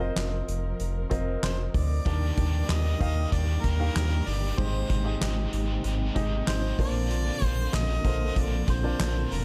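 A round, deep analog bass sits up front in this uplifting, hopeful piano-driven pop excerpt, under a clear, polished baby grand and a distant, roomy harmonica carrying the melody with light vibrato. A soft-mallet acoustic kit with a fat snare, punchy kick, hi-hat and handclaps comes in at 0.2 seconds, and a biting, overdriven electric guitar riff with harmonic tremolo joins at 2.1 seconds. Beneath them, a lush, very quiet symphonic string section holds smooth bowed chords, all set in a small room ambience.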